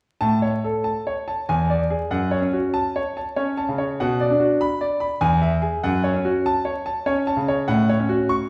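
Wet recital-hall reverb and vinyl crackle surround a brilliant, natural grand piano playing solo and up front from 0.2 to 8.5 seconds in this flowing, dance-like fragment of a baroque-style classical suite movement in 3/4 at 97 BPM, taken with rubato and ranging from E2 to C#6 through chords of A, E7, F#m, Bm and E before settling on F#m/A.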